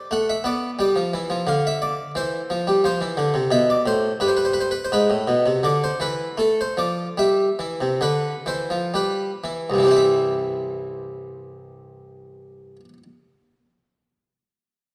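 A brilliant, plucked Italian-style harpsichord with octave strings sits up front in this serene, dance-like baroque-style suite movement in C major and 3/4, played solo with rubato at 56-89 BPM across a range from C2 to F#5, slowing down from 3.9 to 9.9 seconds as chords move from G through F6 to C, all within a dark production and a moderate scoring-stage reverb, in a passage cut from a longer piece that closes on C.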